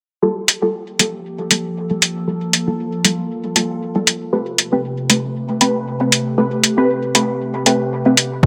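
Metallic electronic hi-hats swing lightly on the sixteenths at 117 BPM in 4/4 from 0.5 seconds, and a punchy, overdriven kick lands only at 8.4 seconds in this deep, hypnotic dub techno fragment cut from a longer piece. A warbling, lo-fi pad of detuned sawtooth and triangle tones holds nostalgic sustained chords, moving from Gm9 to Am9 at 4.3 seconds, colored by chorus, phaser, its own reverb and sidechain pumping. Up front, a muted, detuned sawtooth chord stab, also chorused, phased and pumping, trails dub echo under an evolving filter sweep, all set in a moderate plate reverb with bright 1980s-style digital production.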